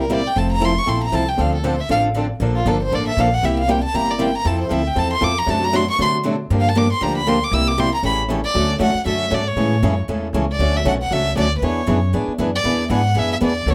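Lively and charming, this short cut from a longer piece is acoustic string swing in the jazz manouche tradition, moving at a brisk swung clip in 4/4. A close, intimate violin carries the melody throughout, its bowed tone soft in attack and airy, with light vibrato and a sul tasto softness that keeps it gentle even while it solos over the first 8.5 seconds. Underneath, a boxy swing-style acoustic guitar with fresh strings provides picked accompaniment, joined by a bright, full-bodied steel-string guitar sitting further back in the mix. An upright bass with gut strings plays pizzicato, dark and thumpy, placed up front alongside the violin. The harmony runs through Fmaj7, Dm7, Bbmaj7 and C7 before an A7 at 8.0 seconds turns toward a second section built on Dmaj7, Amaj7 and E7, all captured in a moderate small-room ambience.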